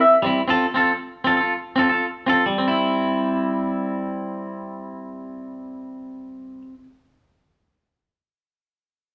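Carefree and joyful, this short highlife fragment, cut from a longer piece, moves in a straight four-beat feel. A twangy electric guitar carries the accompaniment from the start, its clean, picked tone bright and compressed, sitting up front in the sound. The part stays in a compact middle range, moving from a C chord to F over C in the opening stretch before settling back on C at 2.5 seconds as a new section begins. The guitar stops at 6.8 seconds. A moderate studio reverb gives the playing a sense of a large room, with the feel of a band performing live together.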